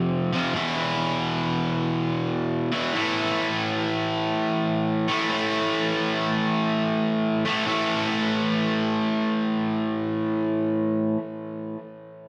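Lightly reverberant and cut from a longer piece, this brooding, smoky rock passage in swung 4/4 features a lone cranked stack electric guitar, bright, overdriven, picked and double-tracked up front with digital delay, moving through F5, E5 and A5 chords in the low register before shifting to a new section at 7.7 seconds.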